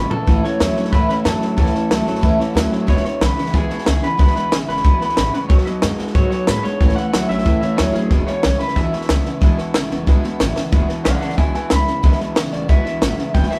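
A straight 4/4 rockabilly groove at 184 BPM in E major drives this upbeat, rollicking fragment, kicked off by a drum fill from a dry, up-front cocktail kit with a high-tuned snare and punchy kick, while a dark, woody upright bass thumps pizzicato on gut strings in the background. Two bright, twangy electric guitars through a small old amp, slightly broken-up and picked, carry a low riff and a higher melody over a full-bodied steel-string dreadnought picking chords from A through E, B and back. The band sounds like it is playing live together in one room with moderate reverb, and after a second drum fill at 10.6 s a clean electric guitar solo rises over the band from 10.7 s to the cut at 13.6 s.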